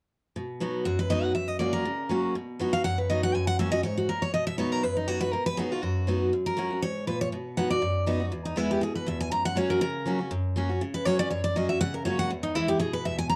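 A dark, moderately reverberant studio sound frames this short bluegrass clip in B major, driving and rustic at a brisk 241 BPM with a light swing on the eighths. Two picked steel-string acoustic guitars sit up front, both bright and full-bodied: one picks the accompaniment from 0.4 seconds, moving through B and F#, while the other enters at 0.9 seconds with the melody, set in a plate reverb. At 8.3 seconds the harmony shifts to E for a new section before the passage cuts off.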